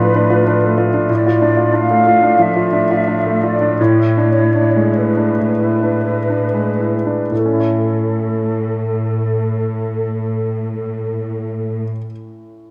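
Lush and passionate, this romantic classical movement for piano and orchestra unfolds in A major with a rubato feel, its tempo drifting between 56 and 96 BPM in 4/4 and easing back through the first 7.3 seconds. It opens on a Dm/A chord, and a clear, intimate baby grand piano carries the melody from A2 to C#5, its long sustain and audible action noise placed up front until it closes at 12.7 seconds. A section of airy flutes adds a mellow second line with vibrato, crisp attacks and rolled-off highs. Beneath it, a rich, smooth cello section holds a bowed bass on A2 with an even, symphonic vibrato, and both orchestral parts stop at 11.8 seconds. The music shifts into a new passage at 7.3 seconds. A moderate scoring-stage reverb and a dark, warm production give the fragment, cut from a longer piece, a plush sense of space.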